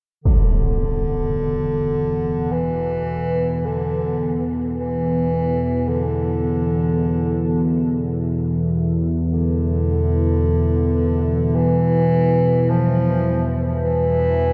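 A distant, roomy bass clarinet carries a solo classical-style melody between D3 and F3, sitting up front with a trail of delay in this vast, ominous piece of dark ambient drone, cut from a longer work and moving in free time over an E minor chord. Beneath it from 0.2 seconds, a warbling, wave-folded analog drone in the E2 to B2 range blends sawtooth, pulse and triangle waves with pulse-width modulation, its slow attack, long release and chorus giving a mellow, vintage, evolving weight. A bright, massive impact strikes at 0.3 seconds, darkened by a low-pass filter. From 8.0 seconds a moody, detuned analog pad fades in behind the other parts, holding sustained chords from E4 to E5 with a sub octave, chorus and phaser. An enormous, wet reverb with a long tail and a warm, dark production wrap the whole piece in a cavernous haze.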